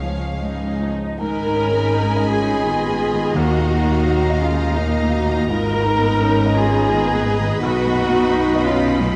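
A sorrowful, longing cinematic orchestral passage at 85 BPM in a rubato 3/4 opens with lush, vibrato-rich violin sections carrying the melody and a second line over a clear, deep-toned piano, an up-front viola section, focused cello and woody double basses, joined at 0.4 s by a dark clarinet and a mellow, hollow flute, then at 1.2 s by distant, roomy French horns holding chords, while hard-mallet timpani sound very quietly from 3.3 s to 4.4 s, all moving through Dbadd9, Abmadd9 and Ebmadd9 to B in a moderate scoring-stage reverb.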